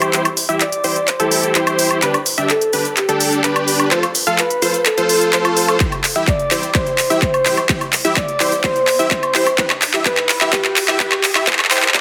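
A breathy, flute-like synth lead carries an uplifting, anthemic melody from the start, lush with chorus and tape echo, over a huge, detuned supersaw riff that pumps against the sidechain through a low-pass filter, while a very quiet unison pluck spins bright arpeggios and a pop kit with crisp hats, handclaps, cabasa and woodblock drives a continuous drum fill. This short festival progressive house build-up moves through C, G and F. At 5.8 seconds a punchy, layered electronic kick joins, and from 7.0 seconds a faint riser sits beneath the dense, heavily limited mix and its wet digital room reverb.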